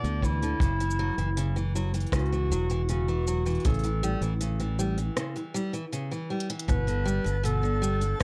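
Folktronica at 79 BPM, hopeful and delicate, where a mellow, distant clarinet carries the melody over bright picked steel-string acoustic guitar arpeggios with finger squeak, both touched with delay, while an up-front fingered electric bass, a gritty saturated kick entering at 0.2 s and a tape-warm organic electronic kit of cabasa, smooth hi-hat and rim click drive things through a break at 5.2 s and a drum fill into a Gadd9 at 6.7 s, where a twinkling granular shimmer drifts in at 7.2 s in this dark, lightly reverberant cut from a longer piece.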